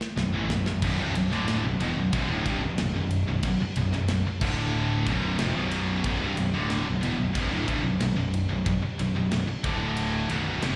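Heard as a live gig through the venue's PA, with light recital-hall reverb, this dark, relentless heavy metal excerpt opens with a drum fill from the tight kit, its cymbals bright and its kick drum tight. At 0.2 seconds a pair of scooped, high-gain guitars enter with slapback echo, sitting back in the mix alongside a growly, fuzz-laden picked bass. At 0.8 seconds a double-tracked, overdriven electric guitar joins the riff with its own slapback.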